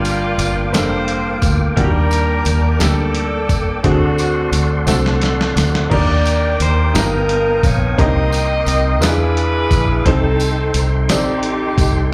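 A tight, vibrato-rich saxophone section carries the melody over clear, worn grand piano, both with slapback echo, while a lightly overdriven tonewheel organ holds sustained chords through a slow rotary speaker with chorus vibrato and key click, a round, foam-muted fingered electric bass sits up front, a jingly tambourine sounds distant, and a gritty, compressed, overdriven sampler-style drum kit with thumpy kick and fat snare enters at 0.1 s and plays a fill at 4.9 s, in this fervent, soulful slow gospel passage, cut from a longer piece, in G minor at 58 BPM in 6/8, moving from Gm7 through D7 and G7alt to Am7b5/C, heard as a live club gig through the venue's PA with light reverb.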